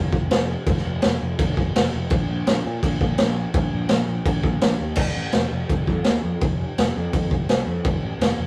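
A straight 4/4 at 167 BPM carries this rowdy, swaggering garage rock excerpt in F mixolydian. A raw acoustic drum kit sits up front with a punchy kick, medium-tuned snare and crash cymbal, its small-room sound gritty, mid-forward and rolled off at the top, while a picked electric bass growls between F1 and Bb2 through fuzz, overdrive and tube saturation. The rough rehearsal-room recording adds moderate reverb, and the music moves into a new section at 5.0 s before the bass stops at 8.5 s.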